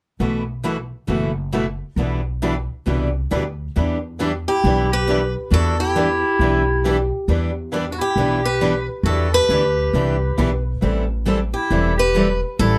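This excerpt of jazz manouche opens at 0.2 s with two picked acoustic guitars and an upright bass, swinging at 136 BPM in E minor and moving from B7sus4 to Em7/B. The steel-string guitar rings with fresh strings and an auditorium character, while the swing-style rhythm guitar sounds warm and boxy, with audible finger squeak. The pizzicato bass, on gut strings, is woody, dark and thumpy, and sits up front. At 4.5 s a second swing-style guitar takes the melody, up front and treated with plate reverb, alongside a bright clarinet playing a punchy, vintage-flavored second line with light vibrato. The mood is virtuosic and swinging, captured with close, detailed microphones and light reverb, and the harmony shifts to Am9 at 10.8 s.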